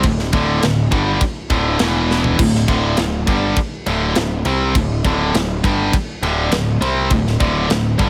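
A light reverb surrounds this relentless, dark heavy metal passage at 102 BPM, where an up-front, bright, double-tracked distorted guitar riff moves between D5 and E5 over growly, fuzz-overdriven picked electric bass and a gritty, big-room acoustic drum kit with a tight kick, medium-tuned snare, crash and ride cymbals and toms that plays a fill at 2.1 seconds.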